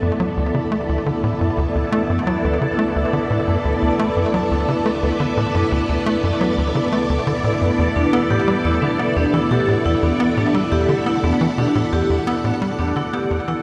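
A straight 4/4 pulse drives this cosmic, luminous piece of ambient space music, cut from a longer work, where a tight, punchy sequencer bass riff with a nasal, plucky sawtooth edge and delay sits up front beneath lush, vintage string-machine chords whose slow-attack ensemble chorus and shimmer reverb give them a mellow glow. At 8.0 seconds a vibraphone joins with metallic, ringing arpeggios carrying a fast motor vibrato, delay and shimmer reverb, as the harmony moves into a minor-seventh chord. The dreamy mix is soaked in cathedral-scale reverb and fades out from 11.5 seconds.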